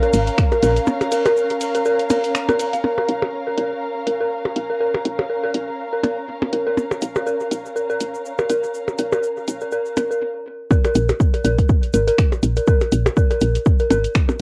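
Minimal techno at 122 BPM in Bb minor, this clinical, quirky clip from a longer piece moves in 4/4 with a light swing on the sixteenths and a home-recorded cassette sound with light reverb. A dark, detuned synth bell carries the riff, its eerie, inharmonic FM tone coloured by chorus, analog delay, a low-pass filter and sidechain pumping, while a woody, round FM bass sits up front with a fast, decaying attack and its own pumping. A house drum kit of finger snaps, bright hi-hat and ride cymbal is overdriven and tape-coloured, joined by up-front, tape-warm percussion blips with tape echo and a grainy cabasa in the background that drops out between 2.8 and 6.8 seconds. Muted, veiled strings played con sordino add a bowed, vibrato-tinged ensemble texture over the Bbm harmony until they stop at 10.2 seconds. The punchy, overdriven electronic kick appears only in a brief hit near the start, then returns at 10.7 seconds after a short stop to drive the closing drop.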